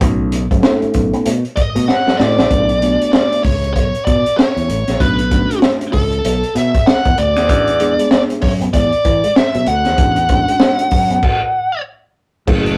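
Driving and hypnotic, this funk excerpt rides a swung sixteenth-note groove in 4/4, cut from a longer piece. A crunchy breakbeat kit sits up front with a punchy kick, a high-tuned snare, dark cymbals and hi-hat, its gritty, saturated tone rolled off at the top, while a fingered electric bass growls bright and amped beneath it. A mellow tine electric piano supplies clean stabs throughout, and a very quiet electric guitar through an envelope filter plays a dark, picked riff that drops out after a drum fill at 2.5 seconds and returns at 7.5 seconds. Entering at 1.6 seconds, a bluesy overdriven lead guitar carries the distorted melody up front until 11.8 seconds. The harmony moves from B9 to Bm9 and on to E13 before the band stops near the close, all captured in a rough rehearsal-room sound with tube saturation and a small-room reverb.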